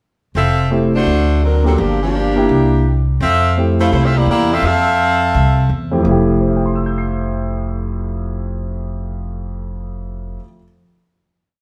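Big band swing jazz in F major at 168 BPM, with a brassy, energetic mood and a swung eighth-note feel in 4/4. A tight saxophone section carries the melody from 0.4 to 5.7 seconds, its motif-based song phrases harmonised in four-part block voicing. Underneath, a woody, pizzicato upright bass on steel strings plays a two-feel line, and a present grand piano with long sustain adds syncopated comping in rootless voicings. The chords move from Fmaj7 through D7b13, Gm7 and C9 back to Fmaj7 before the short tune settles onto a final chord from 6.0 to 8.9 seconds. The band plays live together in a stone room whose wet reverb gives the up-front instruments a glowing, resonant space.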